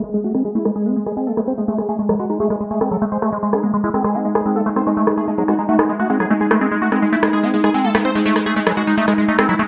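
A straight 4/4 pulse at 146 BPM, marked by a layered electronic rim click with a tape-softened, small-room character, drives this psychedelic trance excerpt, which sits on a G#5 chord and feels alien and psychedelic. Up front, a squelchy square-wave acid bass riff with phaser and tape echo runs beneath punchy, detuned supersaw stabs carrying the melody through phaser and digital delay, while a mellow, tempo-synced gated triangle texture holds sustained chords with chorus and long release. Filter sweeps move through the bass and the texture for the full 9.7 seconds, a very quiet, juicy blip pluck adds a second line from 4.8 to 6.2 seconds, and the whole mix sits in a wet digital room reverb under a low-pass filter.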